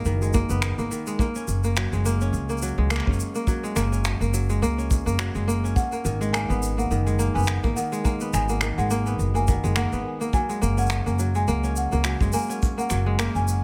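A close small-room recording puts the kora, upright bass and kick drum up front in this hopeful folktronica fragment, which swings lightly on its sixteenths as it moves between G#madd9 and F#add9. A crisp, ringing, fingerpicked kora plays arpeggios through a delay over a dark, woody, thumpy pizzicato upright bass, a punchy kick played with brushes, and shaker and finger snaps. At 5.8 s a marimba with medium mallets on padauk bars joins in the background, its boxy tone carrying a digital delay.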